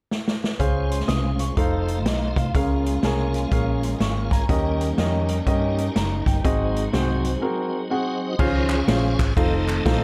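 Reverent and uplifting, this swinging uptempo gospel fragment opens with a big-band drum fill of punchy kick and medium-tuned snare before up-front warm grand piano and a round, dark hollow-body electric bass join, while a piping, scooped tonewheel organ with slow rotary and chorus vibrato adds a fill around 3.5 seconds and takes a solo from 8.4 seconds, lush bowed strings with portamento linger distantly in the background until then, and crisp distant handclaps enter at 8.7 seconds, all in a dark small-room sound.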